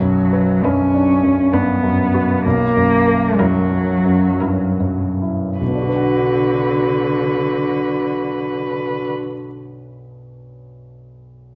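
Solemn and melancholic, this slow romantic movement for piano quartet, cut from a longer piece, sways in a rubato 3/4 and slows through its opening 5.6 seconds, as a clear, polished grand piano accompanies a veiled, smooth-topped violin melody sung con sordino with vibrato and portamento, a muted viola with light vibrato and a dark, up-front cello carrying the second line, before the piano sounds on alone from 9.1 to 11.6 seconds in a warm production with moderate scoring-stage reverb.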